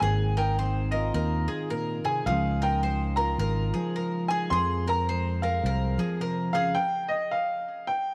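Acoustic folk for a duo or small band, this short excerpt cut from a longer piece moves at 107 BPM in 4/4 with a swung eighth-note feel and a warm, nostalgic mood. A bright upright piano carries the melody up front, its woody, intimate tone marked by audible action noise, while a fingerpicked steel-string dreadnought guitar gives full-bodied accompaniment. A bowl-back mandolin adds picked arpeggios with the shimmer of double strings and a touch of tape echo, and a fingered electric bass sits up front with a dark, round, amped sound. The harmony moves from Ab6 to Dbadd9 and Fm before the bass drops out at 6.0 seconds and the guitar and mandolin stop at 6.8 seconds, leaving the piano alone over an unaccompanied break until 8.1 seconds. Light reverb and a small-room ambience give the whole a close, homely feel.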